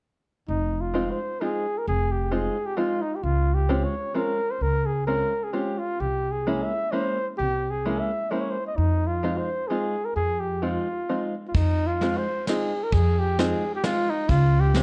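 A warm, close-miked flugelhorn leads this bittersweet, whirling musette waltz in F minor at 130 BPM in swung 3/4, its jazz-style solo full of light vibrato and scooped notes over a woody pizzicato upright bass with transformer saturation and a plunky, twangy fingerpicked open-back banjo, while a soft brush drum kit with tight kick and ride cymbal joins at 11.5 seconds, all within light reverb and a worn, warbling cassette-tape pitch drift in this passage cut from a longer piece.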